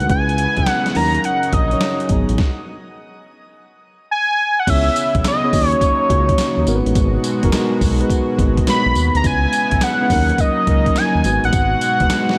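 Swung sixteenths at 105 BPM drive this punchy, slick new jack swing R&B excerpt in G# minor, where a gritty, overdriven boom bap sampler kit with thumpy kick, handclaps, tambourine and gated reverb sits up front beside a bold, warbling octave-doubled lead, while a mellow tine electric piano, a smooth gliding synth bass and a shimmering chorused pulse-width pad in the background cycle through C#m7, D#m7 and G#m7, with a stop from 2.4 to 4.7 seconds before the second section begins.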